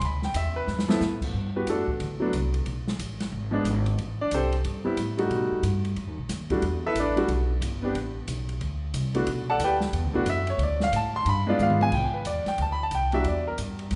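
The trio starts together: clear concert grand piano, pizzicato upright bass and an open jazz drum kit, swinging at 181 BPM in G major in a playful mood. A short drum fill at 0.7 seconds sets up the piano solo, which begins at 1.3 seconds and runs through the rest of this cut-down passage. The piano sits up front with natural tone and deep bass, moving over harmony such as Gmaj9, Am7, B7b13, Em11 and G7b9 before landing on Cadd9 and Em7. The woody, thumpy bass with gut strings is also close and present, and the drums add dark cymbals, a medium-tuned snare and a boomy kick, with a second fill at 11.6 seconds. The piano stops at 13.5 seconds, leaving bass and drums to carry on until 14.0 seconds. A wet recital-hall reverb surrounds the group, giving the sound a soft, rounded top end.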